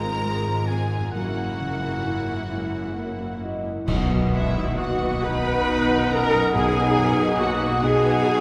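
A rubato 6/8 pulse at 44-47 BPM carries this uplifting, hopeful cinematic film score cut from a longer piece, where a clear, vibrato-rich violin section sings the melody over a mellow solo oboe and a distant second violin section, with a dark grand piano, a focused viola section, a roomy French horn section holding sustained chords, a ringing fingerpicked harp in arpeggios, and a rich cello section and lush double bass section below, all bathed in a vast cathedral reverb as the harmony moves from Fm through Gb7 to an arrival in B major at 3.9 s, where an orchestral accent brings in dark clash cymbals with concert bass drum, barely audible dry timpani and an airy flute, followed at 4.3 s by a very quiet solo clarinet.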